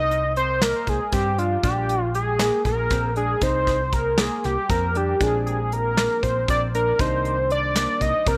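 Driving in a straight 7/8 at 235 BPM counted in eighths, this short cut from a longer progressive instrumental shifts between Cm7 and Bb7 under an intricate, up-front unison lead: a thick, bold, detuned sawtooth-and-triangle voice with a sub octave, fast attack, sustained notes, vibrato and tape echo. Brushes on a small-room acoustic kit give a punchy kick and medium-tuned snare, while a dark, round, amped hollow-body bass anchors the low end and a clean, fingered electric guitar plays arpeggios in the background. At 5.2 seconds a barky, lightly overdriven tine electric piano slips in very quietly through a combo amp, and the whole is set in light reverb.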